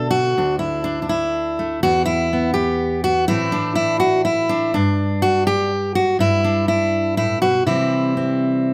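Gentle and hopeful, this short folk passage, cut from a longer piece, features a single fingerpicked steel-string acoustic guitar playing alone for its full 8.7 seconds. The tempo sits at 124 BPM in a straight 3/4, with the guitar tuned slightly high to A4 = 442 Hz. The dreadnought guitar sounds full-bodied and up front, spanning D2 to A4, its picked strings caught by close, detailed microphones with light reverb around them. The harmony moves from a D5 at 0.4 seconds through Em and Am, pauses on an unharmonized moment at 4.7 seconds, then continues to Em/G and settles on C at 7.6 seconds. The result is an intimate, gentle snapshot of solo fingerstyle playing.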